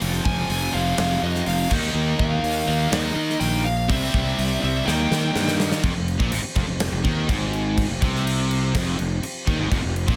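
A straight, driving 4/4 pulse from a gated 80s-style drum kit anchors this aggressive, heavy hard rock excerpt, with its punchy kick, medium-tuned snare and sparkling cymbals sitting up front in an airy, polished stone-room sound. A growly fuzz bass played with the fingers pushes hard in the foreground, while three overdriven guitars pound out the riff further back: a standard electric, a hollow-bodied semi-hollow, and a sludgy double-tracked one. A smooth overdriven lead guitar carries a high melody through a digital delay from 0.2 s to 5.5 s. Underneath, a very quiet tonewheel organ holds thick, gritty sustained chords through a slow rotary speaker, with key click and chorus vibrato. A drum fill at 4.9 s leads into a second section at 5.8 s, and light small-room reverb surrounds the whole performance.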